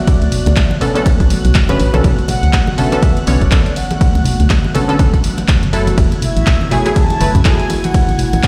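A deep, hypnotic deep house excerpt with a swung 16th-note feel, driven by an overdriven, up-front electronic kick, a tape-warm analog drum machine playing handclaps, hi-hat and ride, and congas sitting in the background. A hollow, organ-like FM bass with tube saturation pumps against the kick alongside muted, detuned dub chord stabs with filter sweeps and dub echo, while a warbly, nostalgic lo-fi pad holds sustained chords and a silky string pad adds high texture beneath the Bm9 to F#m9 change at 5.7 seconds. On top, a round, horn-like synth lead carries the melody with vibrato and dub echo, the whole mix heard as if played on a big sound system in a bare stone room.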